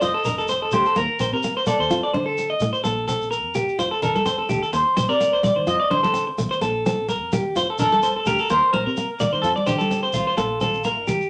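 A joyful, danceable highlife guitar band excerpt at 127 BPM opens with a warm clean electric guitar melody up front, twangy bright electric arpeggios, a boxy picked plugged-in steel-string acoustic guitar and a dark, round fingered electric bass over grainy shekere, with thick-skinned, close and dry congas entering at 4.0 seconds, all swinging lightly on the sixteenths in F mixolydian through F7, Eb5 and Bb5 chords in a wet studio ambience.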